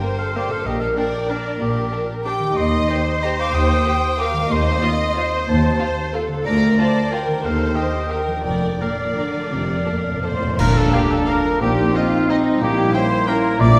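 A clear, punchy oboe carries a second line from the outset of this elegant, sweeping orchestral ballroom waltz in 3/4, cut from a longer piece and shaped with a rubato feel. The melody sits with a violin section set softly in the background, while a second, more intense and close violin section adds its own line. A smooth viola section provides accompaniment, and a bright, ringing concert harp spins very quiet arpeggios. Cello and double bass sections enter at 0.7 seconds to anchor the bass with smooth, even bowing. Near the end of the opening passage, dark cymbals and concert bass drum arrive, and a timpani fill sets in. An airy flute and a trumpet playing stabs join at 10.2 seconds, and the fill leads into a band accent at 10.6 seconds, where a soft-attack clarinet, a roomy bassoon and a mellow French horn section holding chords come in. The whole ensemble is heard from further back in a reverberant concert hall.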